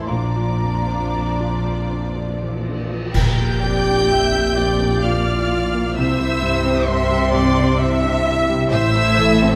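A high, lush violin section opens this moving, uplifting film-score fragment, carrying the melody with focused vibrato while a pure, hollow flute holds a single soft note beside it until 2.1 seconds. Underneath, a second violin line, a close, studio-miked viola section and a deep piano set far back fill out the triple-metre accompaniment at a free, rubato pace. Bowed cellos, dark and expressive with portamento, sit in the background while smooth, lush double basses join them to anchor the low end. Dark cymbals and concert bass drum colour the first five seconds, and an ensemble accent lands at 3.2 seconds as a distant, roomy French horn section enters with mellow sustained chords. The harmony moves from Bb to C and settles on Am, all bathed in a generous scoring-stage reverb.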